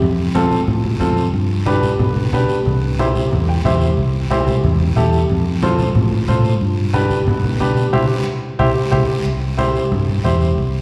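This cumbia excerpt moves at a brisk 182 BPM in 4/4 with a straight, festive and danceable feel in C major, cycling through F, G and C chords. A dark, round fingered electric bass carries the low end with an amped tone, while low-tuned congas played with soft hands add thick-skinned, distant depth. A raspy acoustic guiro sits far back in the mix, adding scrape and texture. Up front, a clear, woody upright piano provides polished, intimate accompaniment with long sustain and audible action noise, breaking into a short fill at 3.3 seconds. The band hits an accent at 7.9 seconds before a brief new section begins at 9.3 seconds, and the whole recording sits in a lush recital hall reverb.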